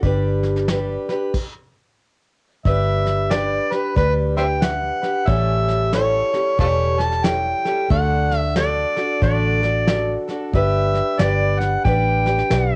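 Sunny and nostalgic, this swinging honky-tonk and classic country excerpt in G major moves at 91 BPM, with a bright, boxy picked archtop guitar, a round, foam-muted electric bass up front and a soft brush kit with a fat snare and punchy kick laying down the groove until a stop at 1.3 seconds, after which a gritty, overdriven harmonica takes the solo at 2.7 seconds with tongue slaps and scooped notes, joined at 3.3 seconds by a woody, mellow upright piano in the background, the whole home recording carrying a dusty cassette haze.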